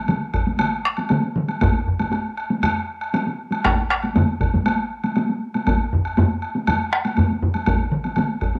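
Heavy-stick taiko ensemble drums, compressed and saturated, surge to the fore from 1.6 s to 7.5 s in this powerful, driving Japanese traditional excerpt, layered over up-front solo taiko drums with the same dense, gritty punch and a hard-stick ensemble that sounds vintage and band-limited, both already playing from the start. A second heavy-stick ensemble in a small room drops out at 4.7 s before a brief return, while a woody, distant woodblock sits in a large room behind them. The straight 4/4 pulse steadily speeds up throughout, all of it caught on a home cassette recording bathed in a wet studio reverb.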